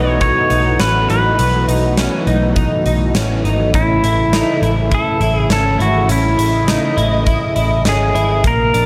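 A moderate concert hall reverb with a 2.5-second tail bathes this short dream pop passage, lending it an ethereal, blissful glow. Up front, a bright, compressed pedal steel guitar carries the melody between E4 and D#5, played with fingerpicks, slide and volume swells and trailed by tape echo. Beneath it, a lush, thick pad of detuned sawtooth and square-wave unison voices holds slow-attack chords through chorus and phaser, while a dark, clean picked electric guitar traces arpeggios through ensemble chorus and tape echo. A round, foam-muted vintage electric bass anchors the low end, and a huge acoustic arena kit with a punchy kick, medium-tuned snare, hi-hat and a pumping room sound enters at 0.2 s. At 102 BPM in a straight 4/4 feel in A lydian, the harmony moves from B7sus4 to Amaj7 at 3.7 s.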